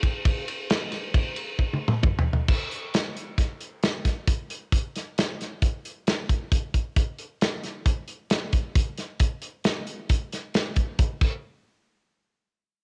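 In a straight 5/4 feel, this restless, intricate rock excerpt features a loose indie drum kit of crash, hi-hat, kick, ride, snare and toms, sitting up front and mid-forward in a small room with dark cymbals, a medium-tuned snare and a tight kick, all colored by cassette tape and light reverb in a home recording, with a drum fill from 1.6 to 2.5 seconds and the kit stopping at 11.3 seconds.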